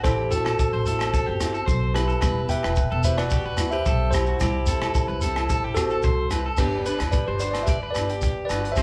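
Highlife guitar band music at 110 BPM in G major, joyful and sunny, this excerpt opens with a bell-like tine electric piano carrying the melody over twangy, slightly broken-up electric guitar arpeggios, a woody, growly pizzicato upright bass and a crunchy breakbeat kit with dark cymbals, tight kick, hi-hat and rim click. Ringing agogo bells and a grainy shekere add percussion, while a breathy alto saxophone with light vibrato plays a second line in the background and a picked steel-string acoustic guitar, with audible finger squeak, picks out accompaniment from 0.1 seconds. The band sounds live in one room with light reverb, cycling through Am7, Emadd9 and C before landing on G at 6.6 seconds.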